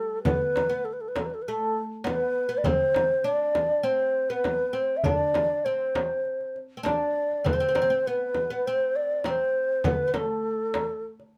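A breathy, mellow low ney carries the melody up front with vibrato and a soft attack, over a woody, plectrum-plucked fretless oud playing a second line beneath, while a crisp metal-shelled darbuka and a deep, saturated frame drum struck with hard hands keep a straight 4/4 at 100 BPM in this hypnotic, melancholic Arabic maqam ensemble excerpt set in light reverb.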